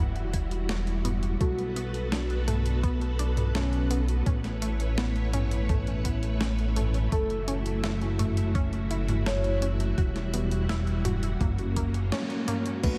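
Nocturnal and nostalgic, this synthwave excerpt glides through a dreamy, cathedral-sized reverb as a lush string machine holds sustained chords and a bright, detuned unison pluck spins arpeggios over a dark, glossy chorused synth bass, with both the strings and bass pumping to a sidechain alongside a thumpy electronic kick. A clean 12-bit drum machine adds its medium-tuned snare, hi-hat, tambourine, toms and crash, while from 1.4 seconds a soft, round, octave-layered lead carries the mellow melody in the background with vibrato and a cassette-tape tint. The band hits an accent at 12.1 seconds before a chorused FM electric piano with a soft pad layer lands a brief stab at 12.8 seconds.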